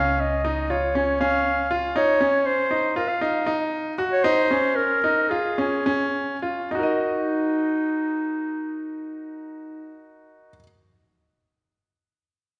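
Contemporary chamber music in 9/8, this pensive yet urgent fragment sets a mellow, smooth-topped solo clarinet up front, carrying a classical-style melody over brilliant, intimate, polished grand piano arpeggios with long sustain and audible action noise. A dark, woody pizzicato upright bass on steel strings sounds only until 1.9 s, and the pulse slows from 2.5 s to 6.7 s, where a second section begins on an Ebm chord. A moderate concert hall reverb surrounds the playing.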